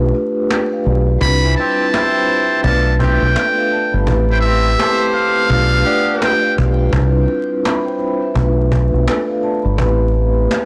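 A reflective, dark boom-bap hip-hop groove at 84 BPM with a swung 16th feel opens on mellow, ringing soft-mallet vibraphone chords over a round, dark dub bass with transformer saturation and a woody, vintage cajon, as a buzzy metal-muted trumpet solo with tape echo and a distant horn section's stabs arrive around 1.2 and 1.4 seconds and drop out by 6.5 seconds, all inside a blown-out, overdriven small-room recording with vinyl crackle that sounds cut from a longer piece.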